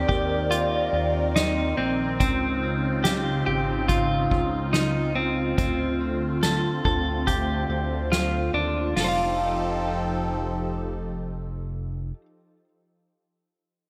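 A straight, unhurried 4/4 pulse from a distant, roomy soft-mallet drum kit, with a punchy kick and medium-tuned snare under gated reverb, carries this dreamy, blissful dream pop excerpt until the drums stop at 9.2 seconds. Up front, a swirling, detuned analog pad holds sustained chords through phaser and chorus, while a clean, compressed semi-hollow electric guitar picks arpeggios with subtle chorus and delay over a glossy, mellow chorused synth bass. A delicate, bell-like celesta sits in the background with analog chorus and delay until 1.4 seconds, all set in a lush hall reverb with bright 1980s-style digital production.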